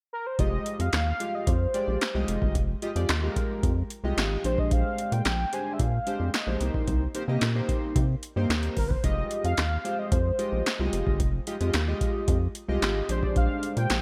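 A straight 4/4 groove at 111 BPM drives this funky, late-night early-eighties boogie funk cut in F dorian: an up-front electro analog drum machine with a deep kick, punchy snare, metallic hats and handclaps pairs with a rubbery, hollow square bass; a glossy, retro chorused polysynth fills out the Fm9, Bb13 and Cm7 harmony from 0.4 seconds; and a velvety, detuned sawtooth lead with chorus and vibrato carries the melody from 0.1 seconds, in a lightly reverberant room.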